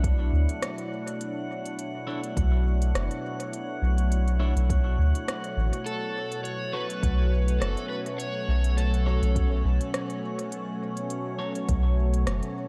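A round, up-front dub sub bass anchors this meditative, spacious ambient dub excerpt at 103 BPM in B minor, beneath a smooth, detuned analog pad with chorus, a deep, layered electronic kick with overdrive sitting in the background, a tape-warm electronic kit of crisp hi-hats and rim clicks trailing dub echo, and a glassy texture of drifting harmonics, while a dark, slightly broken-up electric guitar adds gritty stabs from 2.1 seconds and an overdriven slide guitar sings a brief melody from 5.9 to 9.6 seconds as the harmony moves from Bm11 to F#m.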